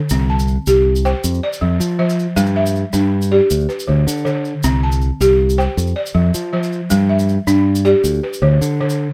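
A steady, straight 12/8 pulse carries this flowing, reflective fragment of West African string and xylophone music, cut from a longer piece. Up front, a woody, buzzing balafon struck with soft rubber mallets spins airy arpeggios throughout, while a growly, direct fingered electric bass sits just as close beneath it and a grainy tube shaker adds a bright, small-room sparkle further back. The harmony cycles through C5, F5, G5 and D5 roughly every second, and the dry sound carries little reverb.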